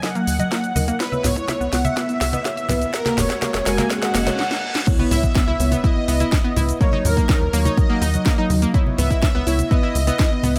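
A build-up opens this dreamy, expansive progressive house passage: a punchy, overdriven kick sits up front beneath a house kit with a cracking snare and bright hats, while a drum fill and filter sweeps on the round, warbling analog pluck arpeggios and the deep, dark chord stabs drive toward the peak. A smooth, detuned supersaw carries the melody with a soft attack and a cassette-tape tint, and a tight, sawtooth sequencer bass enters almost at once, its pluck pumping against the kick alongside the pluck and stabs. Congas and bongos played with soft hands stay close, dry and in the background, and a very quiet riser, reverse cymbal and sub drop carry the rise into the drop at 4.9 seconds, landing with an impact. From 5.1 seconds a lush, bowed violin section adds a very quiet second line with vibrato. Tape echo on the vintage pluck and the chorused stabs, plus light digital ambience, gives the straight groove a hazy, floating sheen.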